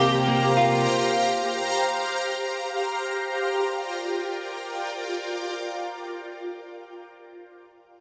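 A wet plate reverb and heavy echo wash over this short dream pop fragment, cut from a longer piece, lending it a dreamy, blissful haze in free time and Bb major. A shimmering ambient pad holds sustained chords from the start through 6.2 seconds, its bright, ethereal tone thickened by detuned unison voices, an octave-up shimmer and granular texture, with chorus, phaser and its own reverb adding motion. Up front, an electric guitar at the edge of break-up picks arpeggios for only the opening 1.4 seconds, its slightly broken-up sound colored by analog chorus and tape echo. The harmony rests on C7sus4 before settling onto Bb6 at 3.2 seconds, where a second section begins. The pad's slow attack and long release let each chord bloom and linger in the reverberant space.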